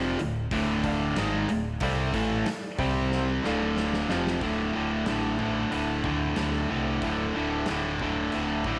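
Gritty and driving, this classic rock excerpt is built on two overdriven electric guitars picking low riffs up front, one bright and the other warm, over a thick, growling FM bass. A gated 80s drum kit with a tight kick and medium-tuned snare enters at 0.2 seconds and plays a fill into the second section at 4.4 seconds, while a woody, slightly detuned vintage upright piano sits in the background until 4.2 seconds. An echo chamber reverb lends the sound a roomy tail.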